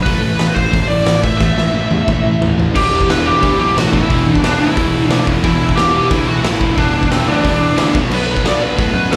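Heard as a live club gig through the venue's PA with little reverb, this angry, raw punk rock cut at 179 BPM puts a dark, distorted bluesy lead guitar with slapback echo and delay up front over a gritty, saturated garage drum kit with a punchy kick, which throws in a fill from 1.4 to 2.8 seconds, while a growly fuzz bass holds down the low end and a compressed overdriven rhythm guitar, a double-tracked high-gain guitar and a very quiet crunchy guitar churn out riffs behind it as the chords move from A5 to Em at 2.8 seconds and on to B5.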